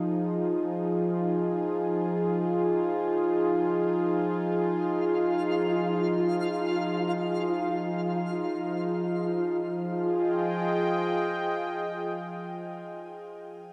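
Ambient music in free time and F minor, serene and spacious, cut from a longer piece and set in a vast, echoing cathedral-like space. A smooth, detuned sawtooth analog pad sits up front with soft-attack sustained chords, thickened by chorus and shimmer reverb, moving from Fm7 to Fm9 at 9.6 seconds. Between 4.8 and 9.6 seconds a quieter, bright granular FM texture twinkles and sparkles alongside it, with an octave-up shimmer, slow attack and long release.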